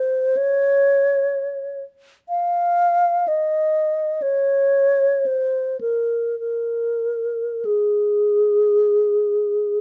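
A mellow alto flute plays alone for the full 9.8 seconds, its pure, close-miked tone sitting up front with vibrato and tongued notes. This short classical excerpt, cut from a longer piece, moves in free, expressive time with a serene, nostalgic mood. A light reverb surrounds the flute.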